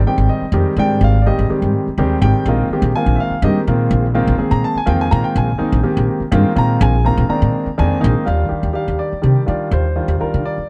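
A straight 6/8 pulse at 83 BPM in dotted quarters drives this soaring, funky electric jazz fusion excerpt in Bb mixolydian, where a woody, thumpy pizzicato upright bass with bright steel strings sits up front beneath a warm concert grand piano of deep, natural tone, the harmony moving from Abmaj7 to Bb9sus4 and arriving on Ebmaj9 at 8.3 seconds in a dry room.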